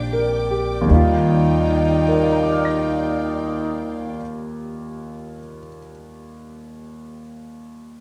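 A breathy alto saxophone with light vibrato and a soft attack carries the melody of this romantic, intimate swung jazz ballad fragment, over lush bowed strings, a woody, growly pizzicato upright bass and an up-front grand piano with audible action noise and long sustain that plays on alone from about 4.2 s to 8.0 s, the band heard together in one room with moderate reverb.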